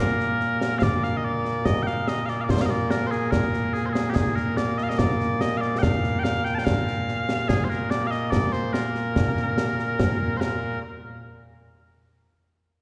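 Heard from further back in a wet scoring-stage space with a 2.0-second reverb tail, this stirring, proud passage of Scottish pipe music moves at 72 BPM in a straight 2/4 in Bb mixolydian, with mellow, sweet small bagpipes carrying a continuous, vibrato-touched solo melody up front from the first moment, joined at 0.2 seconds by an acoustic concert snare drum and concert bass drum with bright cymbals, before both parts stop at 10.8 seconds as a new section begins.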